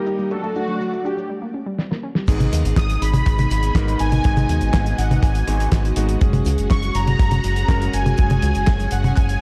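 A dark, warm production with light small-room reverb frames this nostalgic, melodramatic italo disco excerpt in G# minor, moving at 122 BPM in a straight 4/4. A mellow, brassy synth lead carries the melody throughout, its round sawtooth tone dressed in chorus, vibrato and tape echo, while a lush string machine holds sustained chords beneath it with a slow attack and long release. An electric grand piano with a clangy low end punches out stabs under a filter sweep through the opening, and a detuned, warbling unison pluck spins arpeggios through tape echo until 2.2 seconds. A damped 70s kit with a fat snare, handclaps, cabasa, toms, hi-hat and crash sits up front with a rolled-off top, breaking at 1.3 seconds before a drum fill leads into the next section at 2.3 seconds. There a tight, dry kick and a fingered electric bass with an envelope filter arrive, driving the chords from G#m to F#sus2.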